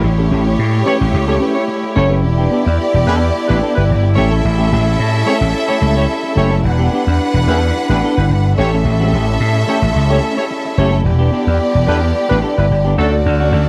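A punchy, up-front vintage slap bass drives this glamorous, danceable disco excerpt alongside a lush bowed string section carrying a second line, a clean hollow-body electric guitar in accompaniment, tight horn stabs and mellow, nasal muted French horns holding sustained chords over A7 and Em7 changes that turn to Dmaj7 at 13.0 seconds, all in a dry, close 1970s-style studio sound.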